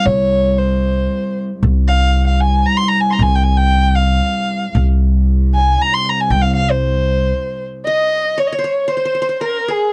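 Arabic maqam ensemble music in C maqam kurd, this brief excerpt from a longer piece moves at 115 BPM in a straight 3/4, its mood hypnotic and melancholic. A single up-front violin carries the melody throughout, bowed with vibrato and sounding dark and woody with a smooth top, ranging from Ab4 to C6. Beneath it, a muted chamber cello section holds a veiled, con sordino drone on C2 until 7.9 seconds, while a pizzicato upright bass with steel strings gives a thumpy, up-front bass line on the same low C. At 7.9 seconds the qanun enters as a second line, its plectrum-plucked triple strings bright-edged and acoustic between Ab4 and Eb5. The sound is dry and close, like a 1970s studio session with little reverb.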